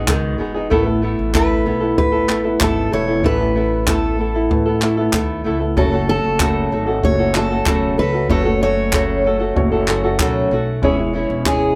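A full-bodied picked steel-string acoustic guitar carries the melody up front from 1.3 seconds, its finger squeak audible, over a dark, fingerpicked flamenco guitar, a soft, felt-muted upright piano with audible action noise in the background, a woody, thumpy pizzicato upright bass on gut strings and a polished jazz brush kit with handclaps and a boomy kick, giving this heartfelt, easy-going acoustic pop excerpt a small-room sound heard from further back.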